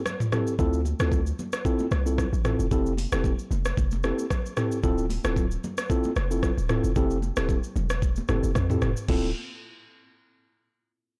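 Hypnotic and smooth, this afrobeats excerpt moves at 113 BPM in D minor with a gentle 16th-note swing, cut from a longer piece. During a short break at the start, a mellow, clean tine electric piano enters and then settles into an easy alternation of Dm7 and Fmaj7 chords, sounding as if played through its own built-in speakers. An electronic, produced afro-pop drum kit sits up front with a knocking kick, metallic hats, crash, rim click, shaker and toms, re-recorded in a large room and with soft clipping on the snare. A hard-hitting 808-style bass enters at 0.6 seconds, punchy and heavy with a fast attack, a noise layer and a decaying sine tone reaching down to D1. Bright, high-tuned congas with thin skins and hard hands sit in the background, compressed and saturated, while the whole recording has little reverb and a blown-out, overdriven character.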